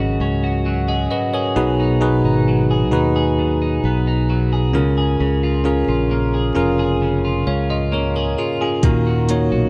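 A slow, straight 66 BPM pulse in 4/4 carries this heartbroken, emotional pop ballad fragment, where a smooth R&B drum kit with soft kick and hi-hat appears only from 8.8 to 9.5 seconds. A bell-like tine electric piano sits up front, clean and direct, while a bright, compressed twelve-string electric guitar picks arpeggios through tape echo and a warm fretless bass holds the low end. The harmony moves from Dbsus4 to Bbm7 and then to Ebm under light reverb and digital ambience.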